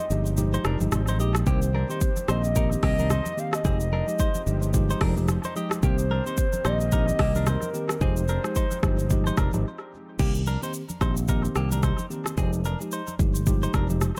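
Smooth and mellow, this afrobeats groove moves at 110 BPM in 4/4 with a swung sixteenth feel, set in C minor and drifting between Fm9 and Cm7. A hollow, woody synth lead with a soft, clarinet-like tone carries the melody until 9.7 seconds, its sustained notes colored by vibrato, chorus and analog delay. Underneath, a very quiet detuned sawtooth pad holds chords through the opening stretch, while a clean tine electric piano and a bright, compressed, direct-recorded guitar riff with its own analog delay fill in the middle. A round, punchy fingered bass and an up-front deep house kit with a deep kick, dark hats, rim clicks, shaker and crash anchor the low end, joined by soft-handed, low-tuned congas that sit close, dry and very quiet in the mix. Brief breaks open the piece and return near 9.6 seconds, after which the lead drops away and the rhythm section, keys and guitar carry the final stretch in an echo-heavy mix with light digital ambience, cut from a longer piece.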